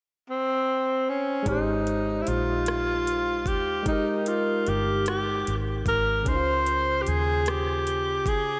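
A slow, straight six-eight lilt at 50 BPM carries this intimate Ab-major R&B excerpt, where a whispered, breathy tenor saxophone enters at 0.3 s up front with light vibrato, scooped notes and a diffuse ambient delay, a bright, barky tine electric piano with light overdrive and lush chorus joins at 1.4 s, and from 1.5 s a dark, round, foam-muted fingered bass and an electronic drum kit of knocking kick, metallic hi-hat and rim click settle under Abmaj7 moving to Dbmaj7, all of it soaked in a dreamy hall reverb.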